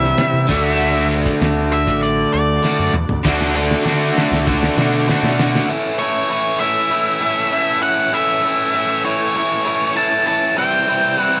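Recorded with light reverb in a small room, this swaggering, confident classic rock excerpt in A mixolydian moves at a straight 98 BPM in 4/4, led by a dark, up-front octave-fuzz lead guitar soloing with tape echo over a very quiet tonewheel organ holding clear chords through a slow rotary speaker with key click. An up-front overdriven electric guitar riffs throughout, joined by a crunchy guitar bathed in spring reverb in the background, a growling, punchy fingered bass and a muffled, cloth-damped thuddy drum kit with a fat snare and dark cymbals. A double-tracked, very quiet distorted guitar and a grainy tube shaker slip in at 3.2 seconds, and around 5.7 seconds the drums, bass and crunchy guitar drop away, leaving the lead, organ and main riff guitar to carry on.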